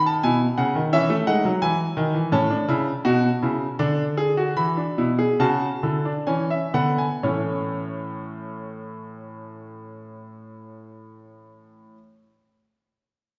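Stately yet lively, this classical passage is a baroque-style fugue in three voices for solo grand piano, set in a three-beat metre with a straight feel. The piano sounds clear and present, placed up front, and it plays alone from 0.0 to 12.0 seconds across a range from A2 to B5. The harmony moves from E over B through E, A and D before settling on E7 and arriving home on A at 7.2 seconds, where a new section begins. Between 1.3 and 7.2 seconds the pace broadens into a slowing that leads into that arrival. A wet recital-hall reverb surrounds the instrument, giving the impression of hearing it from further back in the room, with the highest frequencies softened away. The recording is cut from a longer piece.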